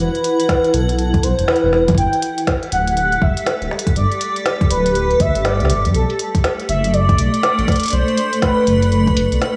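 At 121 BPM in 4/4 with a 62% swing on the 16ths, an electronic kick drum with a deep, up-front sound enters at 0.5 seconds beneath a produced kit of woody snare and smooth hi-hats, set in small room ambience with a diffuse ambient delay. This melancholic, cerebral IDM excerpt rests on a dark, rumbling detuned saw bass and a cloudy, evolving granular pad that holds slow-blooming chords through Esus2, Gadd9 and Bm7. Above them, a velvety synth lead with vibrato, chorus and tape echo carries the melody, all steeped in a dreamy plate reverb.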